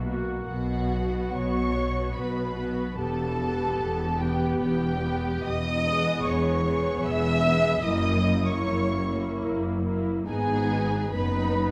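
Serene and lyrical, this slow romantic movement for string orchestra, cut from a longer piece, unfolds in 3/4 at 65-78 BPM with a supple rubato and tuning at A4 = 439 Hz. Every section plays bowed and con sordino, giving the ensemble a dark, veiled colour with vibrato on each line. Muted violins carry the melody from F#5 to E6 from a distant placement with soft attacks, while a second violin line sits close beneath it with a lush sheen. The violas, up front with light vibrato and a smooth top, supply the accompaniment, and the cellos (close) and double basses (distant) share the bass line. The harmony moves from B5 through Em, C#m7/E and F#7 before arriving on G#m at 10.3 seconds, all set in a wet recital hall reverb of 1.5 seconds.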